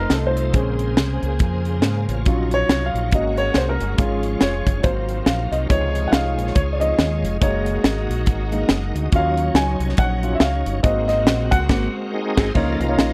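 A natural-sounding grand piano takes the solo from the opening in this hopeful, jubilant uptempo gospel excerpt at 140 BPM in swung 4/4 and Db major, backed by a bright, shouting tonewheel organ with slow rotary speaker and chorus vibrato, soft bowed strings in the background, a round, dark fingered electric bass and a crisp, polished drum kit with a high-tuned snare and tight kick, all moving from F7 through rich ninth and suspended chords to a closing Db69, while a dark, compressed electric guitar slips in at 11.7 seconds for the band accent, captured in a dry, close 1970s-style studio sound.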